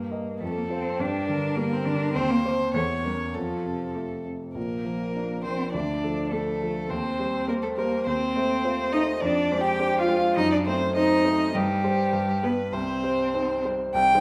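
A spirited, lively classical-period movement for piano trio, taken from a longer piece, moving quickly at 103 BPM in 2/4 with a straight feel and settling into C minor from 9.2 s. A rich, smooth violin with light vibrato carries the melody up front from 0.4 s, while a distant, expressive cello with vibrato and portamento bowed beneath it adds a second line. The up-front baby grand piano supplies open, long-sustained accompaniment in a wet recital hall.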